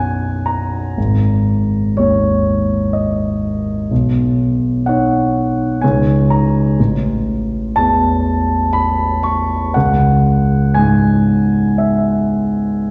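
A solo concert grand piano with deep bass and an open tone plays a serene, luminous impressionist passage in a slow, rubato 3/4 at around 61 BPM, ranging from G#1 to C#6 through B5, G#sus2, Badd9, C#sus2, A5 and C#madd11 chords, set up front yet bathed in a wet concert hall reverb heard from further back in the room in this 12.9-second extract from a longer piece.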